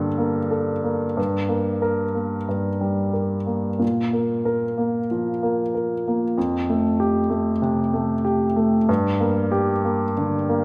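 Rubato in 4/4 at around 94 BPM, this hopeful, intimate fragment of neoclassical minimalist piano features a solo upright piano, woody and up front with audible action noise and long sustain, moving between F2 and Bb4 through Gmadd9, Gm, Bb5 and Fadd9 before returning to Gm at 8.9 seconds, set in a moderate concert-hall reverb.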